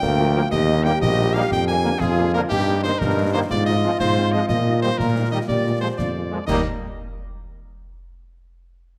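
Set in 6/8 at 121 dotted-quarter beats per minute, this short cut from a longer military-style march for wind band in Eb major sounds festive and proud. A clear, close-miked cornet with vibrato carries the melody, joined in the same register by a second line from a pure, bright small flute group that sits tongued and expressive in the background. A punchy, mellow euphonium adds a second line below, while an up-front tuba anchors the bass with a warm tone and light vibrato. A very quiet French horn section enters at 0.2 seconds with accompaniment, and a trombone section with a smooth top joins at 0.3 seconds on sustained chords, both in a classical style. Snare drum, bass drum and clash cymbals with a dark cymbal colour keep time in the background, and a moderate scoring-stage reverb surrounds the band as the harmony moves through Bb7 before resolving to Eb at 6.5 seconds.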